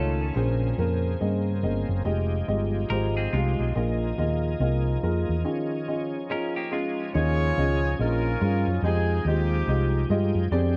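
A round, punchy hollow-body electric bass anchors this jubilant, hopeful gospel excerpt at a swinging 142 BPM from the first beat, together with an intimate, boxy grand piano, a shouting tonewheel organ with key click and slow rotary speaker, a very quiet, mellow French horn section holding chords until 7.1 seconds, and a twangy clean electric guitar with tape echo adding short bright lines, before a distant, roomy horn section takes up the melody from 7.1 seconds over a dark production with light small-room reverb.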